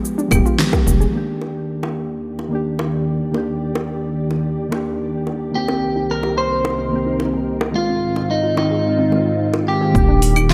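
A smooth sunset chillout clip at 109 BPM in Eb major opens with soft, dark electric-piano-like synth keys carrying chorus and delay, a faint round pluck, overdriven deep house drums with a fat snare and metallic hats, a punchy layered kick, a deep round analog bass and tight high-tuned bongos, all hitting an accent at 0.6 seconds before the beat drops out at 1.1 seconds, leaving the keys and bongos, soon joined by a silky, warbling string machine under a filter sweep, to drift through Ebmaj7, Cm7 and Ab6, joined near 5.6 seconds by a slightly broken-up electric guitar melody with spring reverb and delay, until the kick and bass return at 9.9 seconds on Ebmaj7.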